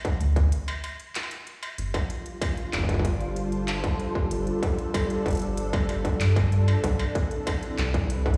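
IDM at 95 BPM in a glitchy, cerebral mood, this 8.4-second excerpt opens with a distorted, up-front electronic kick and an industrial kit of crisp hi-hats, handclaps and struck metal trailing dub echo, both tape-warm and re-recorded in a large room, with a break from 0.5 to 1.8 seconds. A rubbery, hollow square bass with a filter pluck and moving notch bounces in at 0.2 seconds, and a silky vintage string machine, swirling with phaser and ensemble chorus, enters at 2.2 seconds on sustained G7sus4 and then Cmaj7 chords. The whole sits in a stone room reverb, as if played on a big sound system in a bare room.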